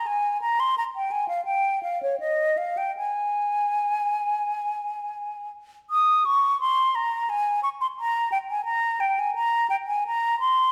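Bathed in a wet recital-hall reverb, a solo concert flute sits up front with an airy, hollow tone, soft attacks and gentle vibrato. This brief cut from a baroque-style fantasia in A-flat major moves at about 84 BPM in 4/4, with uneven, rubato beats that give it a solemn yet flowing feel. The flute ranges from Db5 up to Eb6, and the phrase turns to a new section at 5.9 seconds.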